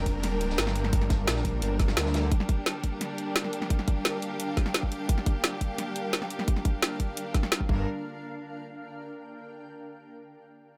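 A thick, detuned saw bass, tube-saturated and chorused, sits up front in this dark, tense drum and bass excerpt at 173 BPM in G minor, dropping out at 2.3 seconds and returning briefly near the end. A tight electronic kick and a layered drum and bass kit with a woody snare and bright hats drive the straight 4/4 groove in a small room, while a gritty, rolled-off breakbeat kit sits in the background only until 2.2 seconds. A clear, bowed string section with vibrato holds sustained chords over a G minor harmony, and a cloudy, evolving granular pad lingers after the other parts until 9.2 seconds, both pumping with the sidechain.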